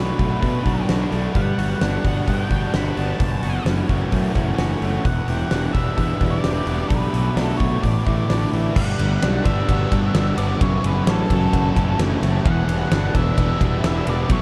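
Blissful and wistful, this shoegaze and dream pop rock excerpt moves at 130 BPM in G lydian, drifting through Bm7, Gmaj7, F#m7 and Em7 chords in a dreamy mix soaked in huge ambient reverb with a cassette-tape character. A warm, distorted octave-fuzz lead guitar carries the melody over twangy, direct-recorded clean electric guitar arpeggios with subtle chorus, both trailed by diffuse ambient delay, while a crunchy overdriven guitar with reverse reverb plays a riff in the background alongside the riff of a very quiet, dark, thick fuzz guitar. A growly, punchy fuzz bass and a huge, up-front arena drum kit with a fat snare, entering at 0.2 seconds, drive the groove, and a double-tracked, compressed overdriven guitar joins the riffing at 8.8 seconds.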